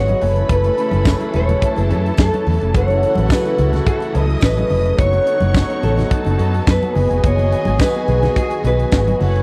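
Glamorous, danceable disco at 107 BPM in which a fingerpicked classical nylon-string guitar, with audible finger squeaks, carries the melody over a lush string section playing a second line with vibrato and portamento, a distant, woody string section holding sustained chords, a very quiet smooth vintage grand piano and a dark, clean fingered electric guitar, while a round, foam-muted vintage bass and a tight funk kit with a high-tuned snare sit up front, low-tuned congas played with hard hands sit in the background, punchy horn stabs with tape echo sit behind, and a jingly tambourine enters at 1.1 s, all moving through Amaj7, F#m7, B9/F# and G#m7 in a dry, close 1970s-style studio sound.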